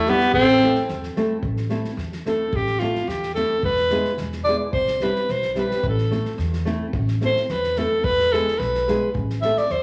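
A clear, up-front alto saxophone opens this fiery, virtuosic fragment of Balkan wedding-band folk in 2/4 alongside a warm, classical-style clarinet that sounds briefly in the background until 0.8 seconds, before the saxophone launches into a present, solo line from 1.4 seconds over dark, woody, thumb-plucked nylon-string guitar on old strings, a pizzicato upright bass on steel strings, and a small-room acoustic drum kit played with bundle sticks for a fat snare and tight kick, all set in a wet, large studio reverb as the minor-key harmony moves through Am, E and C.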